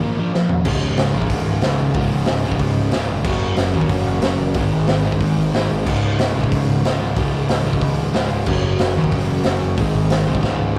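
Rowdy and rebellious, this punk rock excerpt charges along at 184 BPM in Db major, with two crunchy overdriven guitars and a very quiet, double-tracked fuzz guitar churning out riffs in the background from the very start over chords moving from Db through Gb and Ab. The raw garage drum kit, up front with a boomy kick, dark cymbals and a gritty, saturated small-room sound, enters at 0.3 seconds with a fill that also closes the passage at 10.4 seconds. A growling, overdriven picked bass joins at 0.7 seconds, and the whole take carries the rough, tube-saturated feel of a rehearsal room under light reverb.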